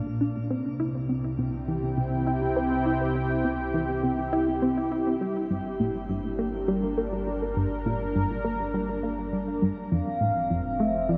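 A sweeping, warbling resonant pad with shimmer reverb opens alongside a deep, round sub bass fading in beneath it, and from 0.2 s a tight, detuned sequenced synth riff under a filter sweep drives this cosmic, mysterious ambient space music at 102 BPM in G dorian through Bb, C, Gm and F in a vast, echoing cathedral reverb, until a mellow horn-like synth lead with vibrato and vintage sampler grit enters up front at 9.9 s in this passage cut from a longer piece.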